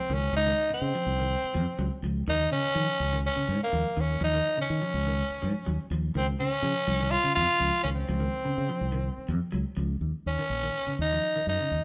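Intense and driving, this afrobeat excerpt at 124 BPM in Eb dorian puts a raspy, gritty tenor saxophone up front with a bright, punchy solo melody, while a clean semi-hollow electric guitar picks hollow-body arpeggios with a vibrato effect in the background and a round, amped fingered electric bass carries the low end, the band playing live together in a large studio with moderate reverb as the harmony moves between Dbmaj9 and Eb7sus2 before shifting to Eb7(no3) at 10.0 s.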